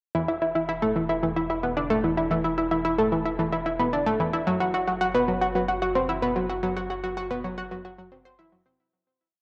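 Hypnotic and mysterious, this short ambient piece of sequencer-driven space music moves at 111 BPM in a straight 4/4, led by an up-front analog pluck whose bright, round sawtooth-and-square tone with a sub octave runs a repeating 16-step sequence coloured by chorus, delay and cassette-tape grit, while a deep sine sub bass holds sustained roots in the background, all bathed in a wet spring reverb with the home-cassette feel as the harmony moves from E5 to F#sus4 at 4.5 seconds before a fade-out from 5.9 seconds.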